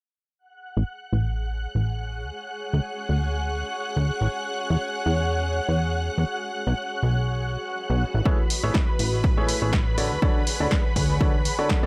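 Uplifting, feel-good piano house at 122 BPM in A major, with a lightly swung sixteenth feel, opens at 0.4 seconds with a silky, chorused analog string pad, joined at 1.4 seconds by a blurred granular cloud pad, both pumping, above a funky, saturated plucky bass entering at 0.8 seconds under a filter sweep. An intimate, woody upright piano riff and an overdriven electronic kick arrive at 8.3 seconds, joined at 8.5 seconds by a dry drum machine hi-hat and punchy snare, as the chords move from Amaj7 through Dmaj7, E and Badd9 to Amaj9.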